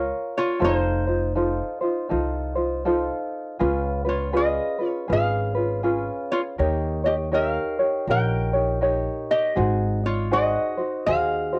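A lap resonator guitar carries the melody, its metallic, nasal slide tone played with fingerpicks and sitting up front, entering at 0.4 seconds. This is a dreamy, relaxed Hawaiian piece in Db major at 80 BPM in 4/4, with a lazy swing on the eighth notes, cut from a longer performance. A tenor ukulele, thumb-plucked and light, plucks out the accompaniment from the start, while a pizzicato upright bass with steel strings adds a woody, thumpy low end touched by tube saturation. The harmony drifts from a rootless Gbmaj7 through a string of dominant sevenths, F7, Db7, Eb7 and Ab7. The guitar and ukulele share a cassette tape coloring, and the whole has the homespun feel of a home recording on cassette with light reverb.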